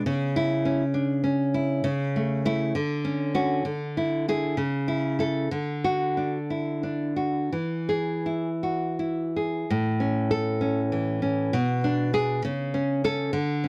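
A nylon-string classical guitar opens alone on a C# minor chord, fingerpicked with fresh, warm strings and an audible finger squeak, unfolding a nostalgic, romantic passage in a lilting 6/8 with free, rubato phrasing. Played up front in a dry, close 1970s-style studio sound, the guitar moves through tender seventh and added-note harmonies before settling into a new section at 9.7 seconds, which continues until the short excerpt ends at 13.7 seconds.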